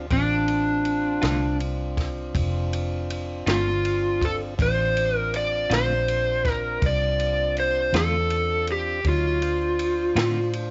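A dry, dusky recording with a muffled top opens this mournful, soulful slow blues fragment in 12/8 on a single Dm7 chord: an up-front overdriven slide guitar carries the melody over sustained tonewheel organ chords turning through a slow rotary speaker, a round, foam-muted vintage fingered electric bass, and a compact cocktail drum kit with punchy kick, high-tuned snare and dark ride cymbal, while a clean, compressed electric guitar with tremolo joins at 1.2 s with picked accompaniment.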